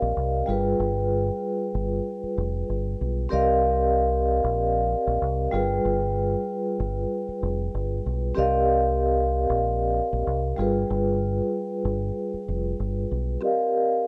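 Moody and dark, this boom-bap hip-hop excerpt sets a mellow, ringing vibraphone played with soft mallets, its slow motor vibrato softened by cassette tape and a low-pass filter, over a round, punchy fingered electric bass up front, both washed in moderate spring reverb as the harmony sways between G7b9 and Cm11 before the bass stops at 13.4 seconds and the vibraphone rings on to 14.1.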